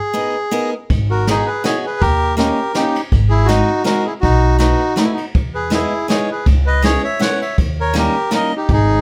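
Dry-sounding, this short cut from a whirling, nostalgic musette waltz in swung 3/4 puts a reedy, airy bandoneon up front on the melody, backed from 0.1 seconds by a bright, freshly strung picked steel-string acoustic guitar with audible finger squeaks, while a woody, thumpy pizzicato upright bass on gut strings and a distant, roomy brushed drum kit with dark cymbals, a boomy kick and a rolled-off top both join at 0.9 seconds.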